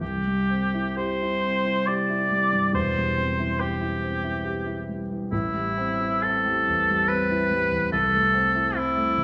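Serene and warm, this brief excerpt from a longer romantic piece for oboe and grand piano moves in an unhurried three-beat metre, with rubato that lets the beats stretch and relax. The oboe carries the melody from the opening moment, its warm, roomy tone touched by a light vibrato and placed up front in a clearly classical style. Beneath it, the concert grand supplies a dark, mellow accompaniment with a deep bass, and both instruments play together through the full 9.2 seconds. The harmony rests on C, moves to C/E, and then settles into Am7 and Am/C, lending a gently shaded colour to the phrase. A wet scoring-stage reverb with a 1.5-second decay wraps the duo in a spacious, glowing ambience.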